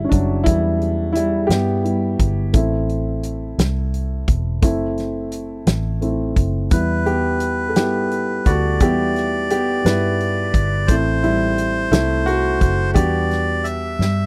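Set in six-eight with a straight feel, this excerpt from a longer pop ballad feels aching and dramatic, its chords moving through E minor shades toward a closing Em7. A dark, woody upright piano carries the accompaniment up front and is featured as the solo voice throughout, its mellow tone sitting over a foam-muted, round fingered electric bass that sounds amped and punchy. An acoustic country drum kit with a punchy kick, medium-tuned snare and hi-hat sits close and natural in a small room, adding a fill at 14.0 seconds. At 6.7 seconds a reedy, breathy melodica joins as a second line, its nasal, plastic-cased voice miked close and dry. The whole has the intimate feel of a dry, close 1970s-style studio recording with a touch of small room ambience.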